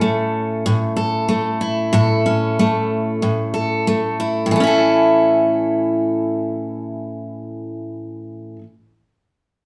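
A carefree, sunny pop fragment, cut from a longer piece, built on a picked steel-string acoustic guitar playing accompaniment throughout. The guitar sounds warm and up front, with an auditorium-like body, and a wet studio reverb places the whole recording a little further back in the room. A second section takes over at 4.5 seconds.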